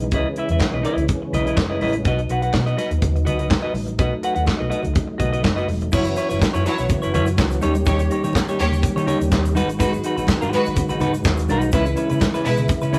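A driving, sultry disco groove in C# minor at 124 BPM opens with the full rhythm section at once: a punchy, up-front drum kit with bright cymbals, handclaps and a medium-tuned snare, a dark, round hollow-body bass, and a twangy, clean picked electric guitar sitting forward in the mix. Behind them a tonewheel organ holds sustained chords, lightly overdriven with chorus vibrato, audible key click and a slow rotary speaker, while very quiet congas add a close, dry patter from soft hands. The harmony moves from C#m9 to B before shifting at 5.9 seconds, where a lush, distant symphonic string section enters with a bowed, vibrato-rich second line and a grainy egg shaker joins faintly in the background. From there the chords pass through F#7sus4, D#7 and G#m7 before settling on C#m7. The band sounds as if playing together in one studio room with moderate reverb, and the passage is cut from a longer piece.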